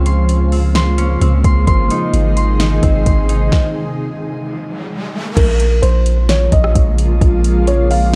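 Atmospheric cloud-rap in a hazy, ethereal half-time feel, this excerpt floats on a blurred, detuned granular pad with sidechain pumping and a ringing, fingerpicked concert harp under tape echo. A deep, sine-toned 808-style bass sits up front beside a smooth R&B drum kit of soft kick, fat snare, rim click, crash and metallic hats carrying vintage 12-bit sampler grit. A stop arrives at 3.5 seconds, an electronic riser sounds before 5.4 seconds, and then a felt-muted upright piano takes the melody, dark and intimate with audible action noise and its own tape echo.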